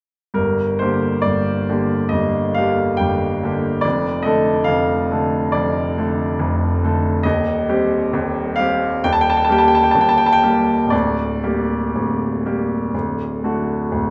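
A brilliant, up-front baby grand piano opens this melancholic, mournful romantic nocturne in G minor, moving with rubato at 58-72 BPM through a chord path that closes on D, its long sustain ringing into a wet recital hall reverb in a short cut from a longer piece.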